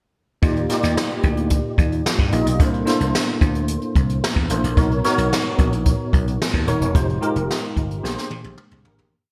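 At 0.4 seconds, a mellow tine electric piano, a vintage slap bass and a jazz brush drum kit enter together, setting up a glossy, urban piece of polished 1980s jazz-funk pop at 110 BPM in a straight 4/4, in Eb major. The brushed kit lays down a crisp sixteenth-note studio groove, its high-tuned snare and boomy kick sitting in a roomy, distant space coloured by gated reverb. Meanwhile, the growly, punchy slap bass runs an agile syncopated line with chromatic approach notes. The worn, slightly out-of-tune electric piano comes through a combo amp with light overdrive and ensemble chorus, pushing drop2-voiced chords through Ebmaj9, C13, Bmaj9, Fm9 and Bb13. The bright digital production wraps the parts in moderate plate reverb, and the short verse begins fading at 6.9 seconds, with a drum fill from 8.0 seconds carrying it to its close at 9.1.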